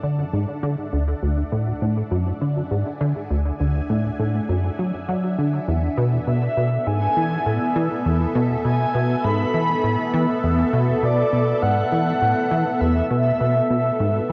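Fading in from the start, a lush, detuned unison pad with chorus and phaser holds Dadd9 and Esus4 chords over a punchy, funky analog bass riff with tape echo, and at 6.3 seconds a breathy, flute-like synth lead with vibrato enters, all at 101 BPM in this cosmic, expansive stretch of sequencer-driven space music steeped in plate reverb and the warble of worn cassette tape.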